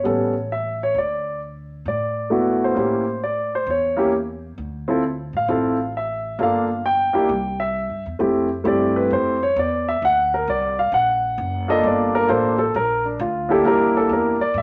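A grand piano and plucked upright bass begin together at the very start of this late-night, cool jazz fragment, swinging their eighth notes at 132 BPM in 4/4 and centred on D minor. The warm piano carries the melody up front, its long sustain ringing between the mid and upper registers, while the bass sits well beneath it in a lower, more recessed place, its gut strings giving a woody, thumpy pluck. The harmony moves from A9 and D69 through A7b9 and Dm9 to Gm7 and C before a second passage opens on Fmaj9 at 8.2 seconds and travels through D7b13 and Gm7 to C7. A wet studio reverb with a moderate decay places both instruments in a shared, softly glowing room. Both parts play throughout, and the piece is cut off at 14.6 seconds, an excerpt from a longer performance.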